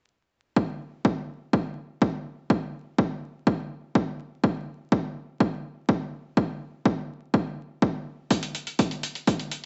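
This short italo disco excerpt opens with an electronic kick drum at 0.6 seconds, pounding a straight 4/4 pulse at 124 BPM in a melodramatic, bittersweet mood. The kick is punchy, layered and overdriven, sitting up front with a roomy character from being re-recorded in a large space, and it carries the whole passage alone until 8.3 seconds. There a gritty, compressed, sampler-style hi-hat joins, also up front, and it rides briefly alongside the kick, which drops out at 9.4 seconds, before the hat itself ends at 9.6 seconds. The overall sound is fairly dry, with a vinyl crackle and a dulled top end that gives the recording an aged, worn feel.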